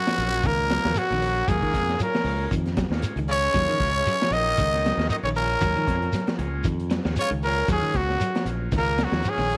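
Hypnotic and funky, this afrobeat excerpt sets a brilliant, growling trumpet melody up front with scooped notes and vibrato, backed by a raspy tenor saxophone and a punchy, distant baritone saxophone, slightly broken-up picked electric guitar arpeggios, a dark, saturated breakbeat kit with a high-tuned snare and tight kick, a bright fingered electric bass, a grainy, dry shekere and a buzzy vintage combo organ sitting very quietly beneath, with a swung sixteenth-note feel inside a small room ambience.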